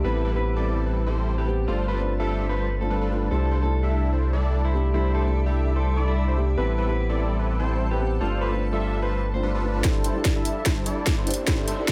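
A fat, nasal sawtooth polysynth riff drives this bright, playful future bass cut at 147 BPM in C major, pumping against a thick, saturated sub bass while a felt-muted upright piano with audible action noise and tape echo, a slightly broken-up lo-fi electric guitar melody drenched in spring reverb and dub echo, and a shimmering, ethereal pad in the background fill out a half-time, swung groove over Am9, G9sus4 and C69. The guitar drops away at 9.6 s and the bass at 9.8 s, as a punchy layered kick and a trap kit with a sharp snare and metallic hats burst in with a drum fill, while a filter sweep on the polysynth drives the build-up. A very quiet riser enters at 11.1 s before the clip cuts off.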